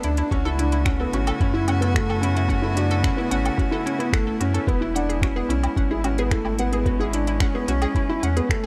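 A digital ambience surrounds this moving, cinematic piece of piano and strings electronica, a short cut from a longer track in a straight 4/4 feel. Up front sits a felt-muted upright piano playing a soft, mellow, intimate riff with a vintage tint, its notes trailed by digital delay. Behind it a close chamber string quartet, one player per line, holds rich sustained chords with light vibrato and an airy sul tasto bow, breathing with sidechain pumping, while a bright, detuned analog pluck runs arpeggios above, coloured by chorus, digital delay and the same pumping. A deep, round sine sub bass anchors the low end and also pumps. An organic electronic kit adds finger snaps, crisp hi-hat and woodblock with a tape-warm sheen, and a muffled, thumpy, pitched-down kick joins at 0.3 s as the harmony moves from A6 to E at 4.7 s.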